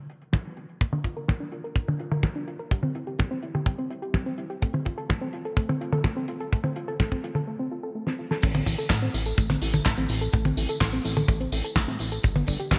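Bright 1980s-style digital production and a lush hall reverb frame this nostalgic, melodramatic italo disco excerpt, where a tight, dry kick and an up-front damped 70s drum kit, with a fat gated-reverb snare, handclaps, hi-hat, tambourine, toms and crash, drive a straight 4/4 beneath a soft, round, chorused pluck that plays delayed arpeggios over Bb, C and F from 0.8 s, until a brief break and a drum fill at 8.1 s bring in a glossy, dark, tube-saturated chorused synth bass as the harmony turns to A minor.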